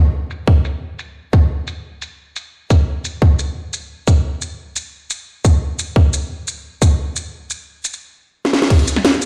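A garage drum kit of crash cymbal, bright hats, shaker and cracking, low-pass-filtered snare opens this soulful, dreamy drum and bass fragment at 175 BPM in a straight 4/4, joined at 0.5 s by a tight, layered electronic kick sitting up front, with a filter sweep running over the drums and a drum fill at 8.4 s, all heard as if played on a big sound system in a bare stone room.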